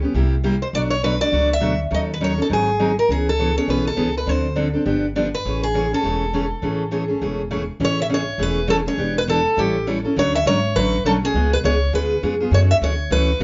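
Swinging and lively, this short cut from a longer acoustic string swing piece in the jazz manouche tradition moves at a brisk 204 BPM in A major, with a gentle swing on the eighth notes. A picked steel-string acoustic guitar opens the accompaniment at 0.0 seconds, its small parlour body giving a boxy, bright sound with fresh strings. An upright bass follows almost at once, plucked on gut strings for a woody, thumpy low end. At 0.6 seconds a second picked steel-string guitar takes the melody, up front and bright with the body of an auditorium-size instrument. The harmony passes through a busy run of seventh chords, from C7 and Bm7 toward Amaj7 in the first section, then through Em7, A7 and Dmaj7 to F#m7 after the second section begins at 7.8 seconds. The trio sounds as if it is playing live in one room, with moderate studio reverb and a soft top end.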